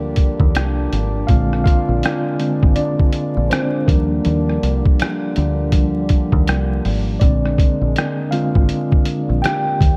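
A cosy, nostalgic lo-fi hip hop excerpt at 81 BPM in 4/4, swung on the 16ths, cut from a longer piece and cycling between Ebmaj9 and Bb7 chords. A mellow, clean tine electric piano sits up front with a cassette-tape, filtered tone and carries the solo from 0.0 seconds, over soft-attack French horn section chords with light vibrato and a round, foam-muted dub electric bass. The compressed, pitched-down sampler-style drum kit enters at 0.2 seconds with a thumpy kick, hi-hat and rim click, all set in light reverb under a bed of vinyl crackle.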